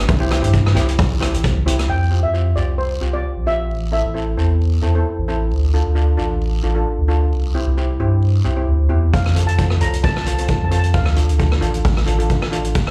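Heard live through a club PA with a touch of club reverb, this festive, bouncy calypso excerpt in F major at 132 BPM sets a bright, airy double-seconds accompaniment steel pan with slapback echo over a deep, round sine sub bass that sits up front, a raspy close guiro and a boomy, rolled-off street-band kit of hi-hat, kick and rim click. The kit drops out at 1.9 seconds, when a mellow, boxy lead pan with slapback echo takes up the melody. The lead pan falls silent at 4.3 seconds, and it and the kit return together at 9.1 seconds.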